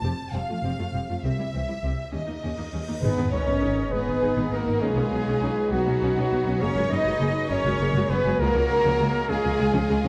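Cinematic orchestral music in a slow 6/8 at 67 BPM, dark and relentless, opens with a clear, close chamber violin section carrying the melody over a lush symphonic violin line in the background, smooth violas and cellos, woody double basses up front and mellow French horns holding chords. At 2.6 s a huge cymbal swell and sub drop lands as an impact at 3.0 s, where the harmony settles into G# dorian and a warm woodwind section enters with sustained chords while a solo trumpet adds soft-attack stabs with light vibrato. The concert hall reverb gives the dark production a moderate sense of space.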